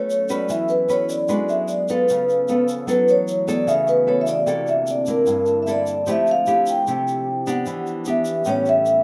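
Up-front soft-mallet vibraphone with a ringing, mellow tone and medium motor vibrato carries the melody in this breezy, sunny bossa nova excerpt at 151 BPM in A major, over warm fingerpicked classical nylon-string guitar with finger squeak, a grainy, bright tube shaker, and a warbling, nostalgic lo-fi pad with chorus and reverb that sustains chords in the background from 0.2 seconds, set in a wet small room with the rough feel of a home demo.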